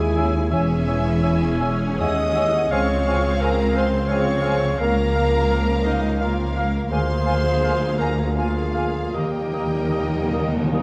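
A dark, present solo clarinet carries a second line through this tender, rubato classical passage in 3/4, set against lush bowed violins with soft-attack vibrato, a clear distant viola section, dark horns holding chords in the background, a very quiet ringing harp, rich cello and double bass, airy flutes, a vintage-tinged cor anglais and a mellow bassoon, all in a wet scoring-stage space, before hard-mallet timpani fill in at 9.2 seconds under an Eb chord.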